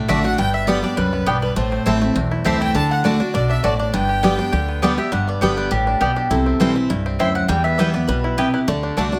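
Bluegrass in G major at a brisk 203 BPM, this virtuosic, rustic cut from a longer piece sets a twangy fingerpicked banjo melody and a picked, double-strung mandolin lead, both touched with plate reverb, over a bright, full-bodied dreadnought guitar that sits up front and a woody pizzicato upright bass. A second mandolin adds stabs throughout, while a clear, focused fiddle with light vibrato plays a second line until 4.8 seconds. The chords move from G through Am and D, then on to C, Em and D, all in a moderately reverberant large studio.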